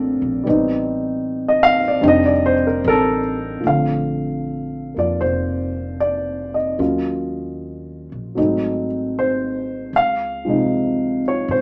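A dark, mellow baby grand piano and a pizzicato upright bass open together in this tender, romantic jazz ballad excerpt, swinging gently at 76 BPM in 4/4 and tuned to A4 = 439 Hz. The intimate, up-front piano, with its short sustain and audible action noise, carries the harmony from Am7b5 and F13 into Bb major at 3.6 s, moving through Bbmaj9, Ebm9 and Ab7b9 to Dbmaj9. The woody, steel-strung bass sits well beneath it in a snug club reverb.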